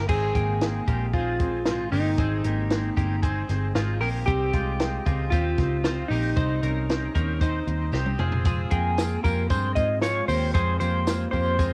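Nostalgic and youthful, this excerpt of jangly indie pop at 115 BPM sets an up-front, dark clean electric guitar melody with analog chorus against a round, foam-muted picked bass, bright twangy twelve-string arpeggios, a full-bodied steel-string acoustic and a buzzy combo organ in the background, and a dry cocktail drum kit with a high-tuned snare and punchy kick, moving through Ab, Cm and Fm before a drum fill at 7.9 seconds brings in a jingly tambourine at 8.5 seconds, all within a small-room home cassette recording.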